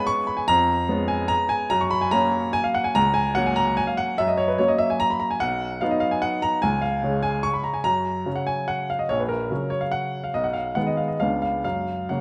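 A classical piano waltz in 3/4 with an elegant, playful mood and a rubato feel, this brief passage cut from a longer piece features a solo baby grand piano, up front and intimate with audible action noise and long sustain, ranging from A#1 to C#6 in a recital hall with moderate reverb, its harmony moving from a C#7/E# opening through F#, B and G#m/B before settling on F# at 11.6 seconds.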